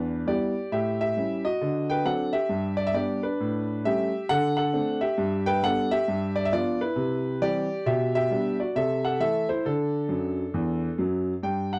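A solo concert grand piano, deep in the bass, boxy and up front with long sustain, plays playful, exuberant stride jazz at 134 BPM with a swung 4/4 feel in G major, moving through changes from Em7 to D before a piano fill from 10.1 to 11.4 seconds, all captured in a dry, close 1970s-style studio booth in this short passage cut from a longer piece.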